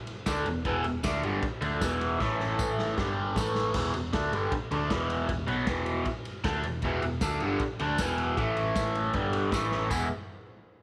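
An overdriven, double-tracked electric guitar sits up front with a bright, phaser-tinged riff over E5, A5 and G5 chords in this swaggering, rowdy garage rock excerpt at 155 BPM, backed by a saturated, gritty drum kit with a punchy kick and a dark, rolled-off top that breaks into a fill at 2.2 seconds, a round hollow-body bass, and a jingly vintage tambourine in the background that drops out at 3.5 seconds and returns at 7.2 seconds, set in light reverb.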